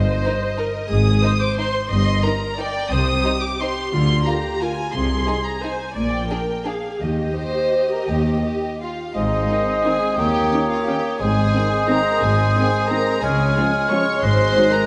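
Elegant and festive, this orchestral ballroom waltz in 3/4 moves with a rubato feel between 157 and 193 BPM, opening in E-flat major on sul tasto strings: violins carry the melody, violas accompany, and cellos and a dark, woody double bass section anchor the bass, while a second violin section adds a second line from 0.3 seconds. At 9.2 seconds the music shifts to A-flat major as an airy flute and a distant clarinet join with their own lines and a clear bassoon adds accompaniment, with a roomy French horn section holding sustained chords in the background from 9.5 seconds. Moderate concert hall reverb surrounds the ensemble in this fragment cut from a longer piece.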